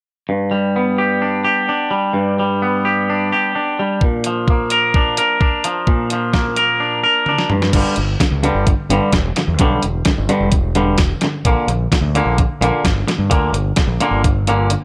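Jangly and carefree, this excerpt of straight-feel indie rock at 129 BPM opens with a twangy, compressed electric guitar riff up front, joined at 4.0 seconds by a clean 12-bit drum machine with a thumpy kick and fat snare, and after a drum fill, a growling, overdriven fingered bass enters at 7.7 seconds as the chords again move from G5 to Bb, all set in light reverb and digital ambience.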